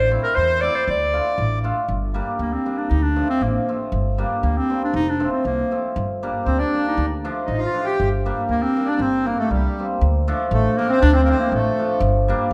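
A clear, close-miked clarinet leads this soulful, festive klezmer excerpt in a classical solo style, carried by woody pizzicato upright bass and a shimmering, hammered cimbalom, while a reedy, airy accordion with slapback echo drops out at 1.6 seconds and returns at 6.4 seconds, all set in the lingering reverb of a recital hall.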